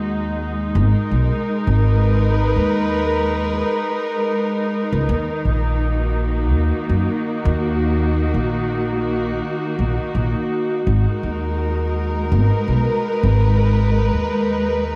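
From the first moment, a muted string section and a pizzicato upright bass sound together in this ambient dub excerpt, setting a spacious, meditative mood at an unhurried pace with a gentle swing. The strings, played con sordino with vibrato, hold sustained bowed chords with a veiled, dark tone and a smooth top. Beneath them, the bass plays low in the mix's foreground, its steel strings paired with a woody, acoustic tone touched by tube saturation. The harmony moves slowly from G#madd9 to D#m at 5.1 seconds, then settles on G#m9 at 10.9 seconds. A huge ambient reverb with an 8.0-second tail soaks the dreamy mix, yet both parts stay up front through the full 15 seconds.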